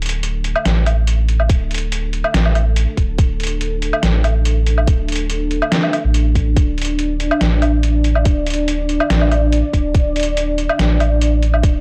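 A dark, brooding deep dubstep fragment at 142 BPM in a half-time feel opens on a detuned sawtooth analog pad with chorus holding a D5 chord, a round, soft sub bass with transformer saturation, and a muffled, pitched-down, overdriven sampler-style trip hop kit of hi-hat, snare and woodblock, before a tight, up-front electronic kick drum joins at 1.5 seconds, all captured in a dry, gritty cassette-tape sound.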